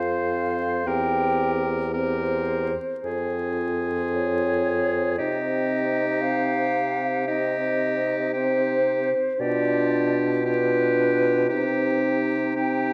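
Yearning and melancholic, this slow romantic wind-quintet movement, cut from a longer piece, drifts in rubato at 56 BPM, with an airy, hollow flute singing the close-miked melody with vibrato over a bright oboe second line, a soft-attacked clarinet and a warm, lightly vibrato-tinged French horn sounding distant in the wet recital-hall reverb, and a dark, up-front bassoon carrying the bass, as the harmony moves from F5 through C7/E and Fm to Cm, G7/B and back to Cm beneath a layer of vinyl crackle.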